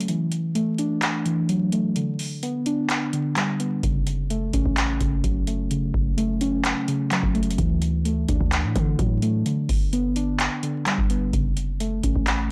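A half-time trap groove of booming analog drum-machine kick, metallic hi-hats and handclaps opens this eerie, menacing hip hop excerpt beside muted, felt-like synth keys dulled by chorus and a low-pass filter, before a deep, boomy 808-style bass enters at 3.8 s, the recording set in a blown-out, overdriven haze with vinyl crackle and light digital reverb.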